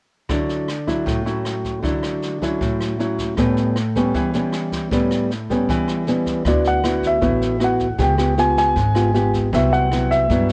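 Bossa nova with a sophisticated, sunny mood, cut from a longer piece, where an up-front, thumb-plucked nylon-string guitar and a distant, roomy brush kit with boomy kick and rim click open together before a mellow, long-sustaining dark grand piano takes the melody and a woody, thumpy pizzicato upright bass joins at 6.5 seconds, all under light reverb and the warbly pitch drift of worn cassette tape.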